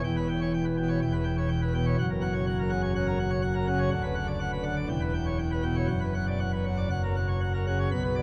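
A full pipe organ plenum opens this dramatic, stormy classical toccata, played solo at 123 BPM in a straight 4/4 and cut from a longer piece, its brilliant mixtures and baroque voicing sitting up front with an audible chiff across a span from D1 to B5. The harmony moves through C#m7b5/E, F#, Bm/D, C#m7b5/E and Bm/F# before returning to F# over about 8 seconds, tuned slightly low at A4 = 438 Hz. A cathedral reverb lingers around the organ, and the sound carries the worn, warbling pitch drift of old cassette tape.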